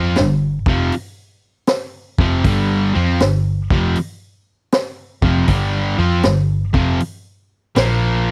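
A bright, double-tracked distorted electric guitar riff and a dark, round, foam-muted picked bass open this swaggering, raunchy blues rock and southern rock power-trio fragment at a swung 79 BPM in 4/4, with a gritty, saturated garage drum kit (boomy kick, high-tuned snare and hi-hat) joining at 0.2 s; the riff sits on G5 before shifting to Bb5 at 7.8 s, all captured in a dry, close 1970s-style studio sound.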